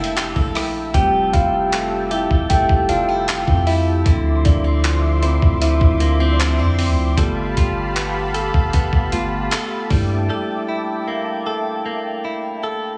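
A mellow tine electric piano leads this late-night, sensual contemporary R&B excerpt at 77 BPM, over a smooth detuned analog pad with chorus, bright clean electric guitar arpeggios through digital delay, a deep sine 808-style bass and a gritty, compressed sampler-style drum kit of thumpy kick, rim click, hi-hat and handclaps up front, until the drums drop out at 10.1 seconds and the bass at 10.3 seconds, leaving the keys, pad and guitar in a small, lightly reverberant room.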